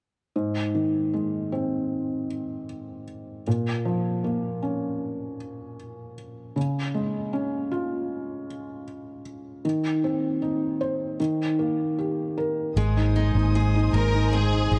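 A felt-muted upright piano carries this tender, heartfelt pop excerpt on its own from 0.4 seconds, its soft, mellow tone close and intimate, with the audible noise of its action adding a natural touch. At a slow 77 BPM in Ab major, it moves through Ab, Bbm, Db, Cm/Eb and Eb before settling back on Ab. At 12.8 seconds the arrangement opens up into a new section: a dark, foam-muted electric bass sits round and punchy up front on a low Ab, a picked steel-string acoustic guitar adds full-bodied arpeggios, and a studio string section holds smooth, vibrato-rich sustained chords above. From 14.0 seconds a clear, focused violin section enters with a short bowed melody. Light studio reverb gives the whole a gentle sense of space.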